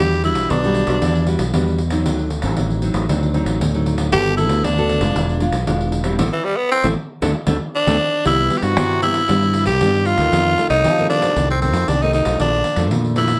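A raspy, growling tenor saxophone leads this lively, festive samba-and-choro excerpt at 116 BPM, its gritty, scooped notes and light vibrato sitting up front over a fingerpicked, full-bodied classical nylon-string guitar and a punchy, growly fingered electric bass, with a jingly, distant pandeiro entering at 0.1 seconds and a band accent from 6.2 to 8.3 seconds before the harmony moves to Cmaj7, all in a light reverb.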